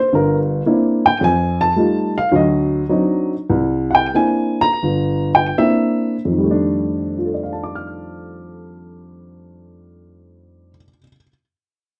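Swung eighths in 4/4 carry a loose, rubato feel as the upright piano slows between 1.2 and 6.4 seconds, moving through rich chords like C9, F9 and D7b9 before settling on an F13 at 6.4 seconds. This is a swinging, sophisticated solo jazz passage cut from a longer piece, played on a dark, woody upright piano with short sustain, audible action noise and a touch of slapback echo. The piano sits up front and intimate in a dry, close, 1970s-style studio sound with light reverb.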